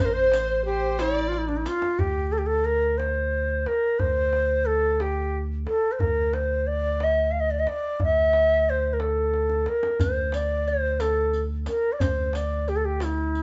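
A breathy, reedy ney carries the melody from the very first moment, its straight, soft-edged tone sitting up front over a deep, clean sine sub bass, while a dark, woody violin section adds a brief bowed second line with vibrato that ends at 1.4 seconds. This is a Persian modal ensemble piece in the shur dastgah on D, moving at a slow 60 BPM in a straight 6/8 that feels longing and hypnotic. The tombak enters at 0.3 seconds with a tight, acoustic sound and keeps playing almost to the close, joined at first by the close, dark jingles of a riq, which drops away at 1.8 seconds and returns at 10.0 seconds. Drum fills mark the turn from the short opening section into a longer second one around 2.0 seconds, and again just before the riq comes back. The ensemble sounds like a band playing together in one room, with light reverb and mellow, rolled-off highs, in a passage cut from a longer piece.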